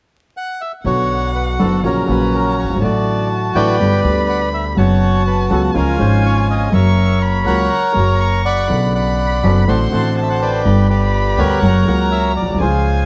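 Set in a rubato 4/4 at 122 BPM, this melancholic, passionate tango excerpt is cut from a longer piece and moves through B minor harmony, with a turn to C# and F# before returning to Bmadd9 and closing on F#. A reedy, close-miked bandoneon carries the melody from 0.4 seconds, up front and touched by plate reverb, and at 0.8 seconds the rest of the ensemble joins. Beneath it a second bandoneon adds very quiet stabs, while a dark, expressive violin played by one bowed player traces a high second line with vibrato, portamento and a soft attack. A worn baby grand piano supplies the accompaniment, and a woody pizzicato upright bass with steel strings sits up front in the low register. The production is dark and warm, with a moderate studio reverb and a layer of vinyl crackle.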